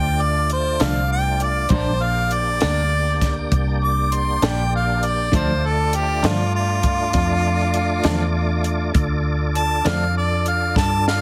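Smoky and mournful, this slow blues excerpt in 12/8 at 66 BPM in D minor features an up-front, clear harmonica soloing with overdrive and delay over sustained tonewheel organ chords through a slow rotary speaker, a dark, foam-muted fingered bass, a dry cocktail drum kit with a high-tuned snare that enters at 0.5 seconds and closes with a fill at 10.8 seconds, and twangy clean guitar with harmonic tremolo, all wrapped in a heavily compressed radio sound.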